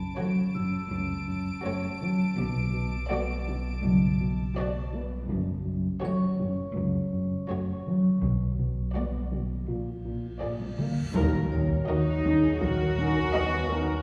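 This ominous, eerie suspense film score excerpt in F# minor moves at 82 BPM in a straight 4/4, built on a smooth, wave-folded synth bass riff with portamento sitting up front over a deep sine sub bass drone, a rich double bass section and floating cello section played sul tasto, while a bright, ringing hard-mallet vibraphone and a high violin texture (ending at 4.9 s) shimmer above a soft-attack violin melody, a background second violin line and a dark, woody viola accompaniment with vibrato, before a very quiet, dry taiko ensemble enters at 5.3 s, a drum fill and huge reverse cymbal lead into an impact, band accent and articulate timpani hit at 11.2 s as the harmony shifts to Ebm, and a mellow, distant French horn section closes on sustained chords, all heard from further back in a wet concert hall.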